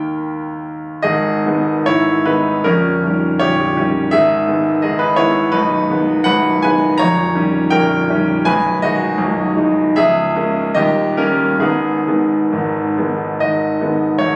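In a rubato 2/4 that drifts between 65 and 86 BPM, this brooding, passionate romantic character piece in G# minor, cut from a longer work, gives a clear, polished concert grand piano the whole stage, up front with deep bass and short sustain reaching from A#0 to A#5, as the harmony circles G# minor and D#7 before an A#m7b5/C# at 10.0 seconds leads back home to G# minor at 11.6 seconds, all caught on a phone in a recital hall with a moderate 1.5-second reverb.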